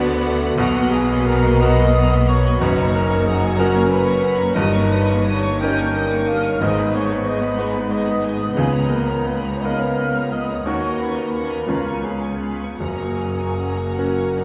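Flowing in a rubato 12/8 lilt, this lush, lyrical classical passage, cut from a longer piece, is led by a brilliant grand piano with long sustain sitting up front, while a distant violin section with vibrato also carries the melody high above. A second violin section and an airy flute ensemble weave secondary lines in the background alongside a mellow solo clarinet, as a bassoon, a chamber viola section and a French horn section holding sustained chords fill in the middle. Smooth bowed cello and double bass sections anchor the bass, and the whole ensemble is bathed in a wet scoring-stage reverb, heard from further back in the room.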